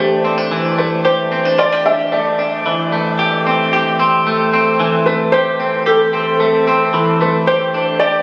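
Captured on a phone in the room, this compressed recording is bathed in a wet shimmer reverb with a 6.7-second tail and a studio ambience. It is a floating, dreamy dream pop fragment in C major at 112 BPM, with a bright, twangy clean electric guitar up front playing picked arpeggios through lush chorus and digital delay, while a soft, mellow felt-muted upright piano carries an intimate melody between G4 and E5, also touched by delay. Both parts play throughout the 8.2 seconds, moving from C69 to Am7/E at 2.7 seconds and back to C69 at 6.9 seconds.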